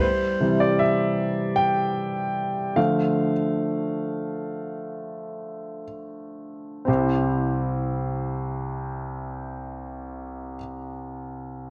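This hopeful, tender pop piece moves at a slow 58-79 BPM in C major, drifting from C to Dm and back to C. An intimate, up-front concert grand piano carries the accompaniment and takes a solo through the opening 6.9 seconds as the tempo slows, its deep bass, long sustain and audible action noise giving it a close, polished presence. A clean, scooped and compressed electric guitar with spring reverb picks arpeggios in the background only until 0.6 seconds. A light digital ambience and a worn cassette-tape warble lend the piece a wavering pitch drift in this short cut from a longer piece.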